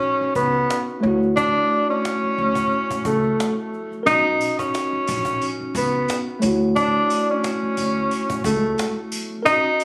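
Confident and warm, this brief clip from a longer boom-bap hip-hop piece rides a lightly swung groove as the harmony alternates between Bmaj9 and Dmaj9. Up front, a breathy tenor saxophone carries the jazz-style solo melody with subtone, light vibrato and scooped notes, shaped by high- and low-pass filtering and a digital delay. Beneath it, a worn, slightly out-of-tune tine electric piano gives clean, direct filtered accompaniment, while a snappy, close and dry cajon with snares holds the beat. A woody pizzicato upright bass with steel strings enters at 0.2 seconds and drops out at 8.7 seconds, and jingly sleigh bells join at 4.1 seconds. The whole take has the compressed, intimate character of a phone recording in the room, lifted by a light studio reverb.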